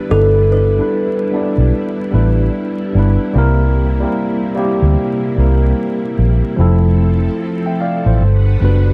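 A round, foam-muted electric bass sits up front in this cosy, mellow lo-fi hip hop excerpt at 74 BPM with a swung sixteenth feel, moving through G6, C7, Fmaj7 and Gmaj7 chords. A clean tine electric piano carries the accompaniment with cassette tape character and a low-pass filter, while a string machine playing cello tones holds slow-attack sawtooth chords thickened by ensemble chorus. A woody, hollow-sounding kalimba plays a brief ringing melody that ends at 2.5 seconds, all set in a dark production with moderate reverb and vinyl crackle.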